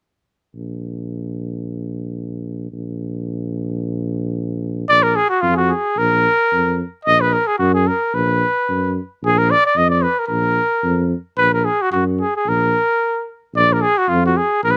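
A mellow tuba opens this bittersweet, fiery Balkan folk fragment alone at 0.5 s, distant and roomy with light vibrato, before a classical-style trumpet enters up front at 4.9 s with vibrato and a slapback echo over a swung 111 BPM two-beat pulse in Bb phrygian dominant, both parts pausing together in a brief stop at 13.0 s and resuming in a dry outdoor setting.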